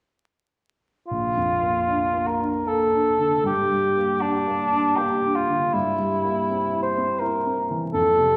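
The recording has the soft haze of vinyl crackle and a wet recital hall reverb, heard from further back in the room. This short extract, cut from a longer romantic classical duo in Bb major, moves in a rubato 3/4 at around 75-82 BPM, with a warm, serene mood. From 1.1 s to 8.4 s, a dark cor anglais carries the melody between D4 and C5, its tone coloured by a light vibrato and sitting clearly above the accompaniment. Beneath it, a warm grand piano supports the line from Bb1 to E4 across the same span. The harmony passes from Bb to Gm and then to C7/G, giving the single section a gentle, unresolved lift.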